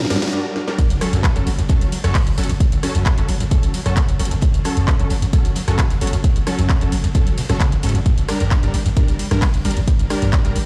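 A heavy, up-front electronic kick drives this intense, hypnotic stretch of peak-time techno at 132 BPM in 4/4, landing at 0.8 seconds on the drop after a brief break, with a room re-recording giving it weight. Beneath it, a growling, buzzy 808-style bass enters at 0.9 seconds, saturated and filtered, pumping against the kick. A squelchy, resonant acid line screams through distortion and lush chorus in the background. Above it, bright, thick rave stabs in unison, detuned and wave-folded, cut through with tape grit and dub echo. A layered techno kit supplies a cracking snare, metallic hats, claps, ride and rim clicks, while a very quiet, oversized low-tuned acoustic kit adds a dark, fat snare in a stone room. An electronic riser, swell and impact open the excerpt, which is in F# minor tuned to A4 = 439 Hz and shifts between G minor and F# minor over a big-system sound in a bare room.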